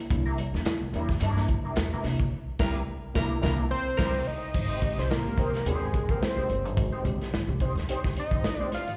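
A strutting, gritty funk groove rolls along at 108 BPM in 4/4, its sixteenths pushed by a light swing, in a short cut from a longer piece heard as a live gig through the venue's PA with a light recital-hall reverb. Up front, a crunchy breakbeat kit from a small room drives it with a tight kick, a medium-tuned snare, hi-hat and dark, saturated crash cymbals, while a woody, thumpy pizzicato upright bass sits just beneath. A dark, clean fingered electric guitar adds mellow accompaniment through wah and slapback echo, and a tine electric piano drops in stabs from the background over a C9 chord that moves to Abmaj7 at 4.5 seconds. Compressed group handclaps flicker briefly near the start, and a band accent begins at 2.3 seconds; shortly after, at 2.6 seconds, a raspy, vintage tenor saxophone plays a short second line on a single Bb4. From 3.7 seconds a fat analog lead takes the melody to the end, its sawtooth and square-wave tone wave-folded with a sub octave, sustained notes, vibrato, and both slapback and tape echo.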